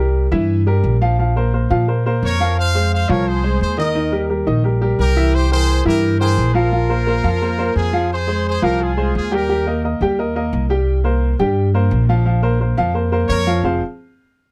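Passionate and danceable, this salsa cut moves at a brisk 174 BPM in F minor, with a grand piano comping above a woody, growly pizzicato upright bass, both close and dry in a 1970s-style studio sound. A punchy trumpet section with light vibrato carries the melody from 2.2 to 9.8 seconds, then returns briefly at 13.3 seconds. The warm, intimate piano lets its action noise come through as the harmony circles through C7, Bbmadd9, Fm and Eb.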